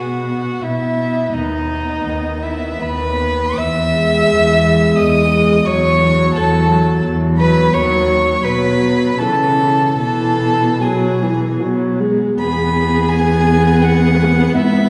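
A close, up-front cello carries the bass beneath an equally present second violin's inner line, a viola accompaniment and a high first-violin melody in this melancholic, yearning slow romantic movement for string quartet in E major, moving in a rubato 3/4 at 73-89 BPM, with each player bowing sul tasto with light vibrato, soft attacks and a warm, airy, intimate tone, heard from further back in a wet recital hall with a 1.7 s reverb as the phrase settles onto E at 12.4 s.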